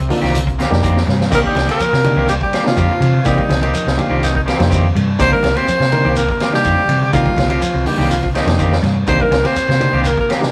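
A rough, stone-room rehearsal sound frames this intense, funky afrobeat cut in C minor at 124 BPM, where a breathy, up-front tenor saxophone carries the melody over a veiled, growling bucket-muted trombone, a round hollow-body fingered bass, a barky, lightly overdriven electric piano, twangy slightly broken-up guitar stabs, faint bright clean guitar arpeggios, a vintage drum kit with a punchy kick and dark cymbals that plays a fill from 0.3 to 1.3 seconds, soft ringing congas and a grainy shekere in the background.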